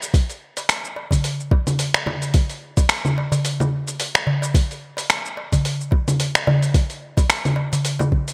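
Earthy and mystical, this brief downtempo excerpt at 109 BPM in 4/4 swings its sixteenths lightly, pairing a gritty, compressed sampler-style soul kit of congas, finger snaps, hi-hat and shaker, up front with gated reverb, against a soft, tape-warm electronic kick re-recorded in a small room, while a crisp, metal-shelled darbuka enters at 0.6 seconds, close and dry, all within light digital ambience and a bright 1980s-style production.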